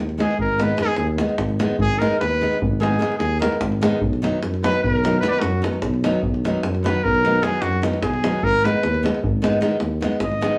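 Restless and bittersweet, this fragment of Balkan wedding-band folk moves in a straight 11/8 at 299 BPM in Ab minor, with a bright trumpet soloing up front with light classical vibrato over a warm, full-bodied fingerpicked nylon-string guitar, a dark, close-miked tuba bass and a deep acoustic davul, all caught live in a small room with moderate stone reverb as the harmony shifts from Abm to B at 4.0 seconds and back to Abm at 8.4 seconds.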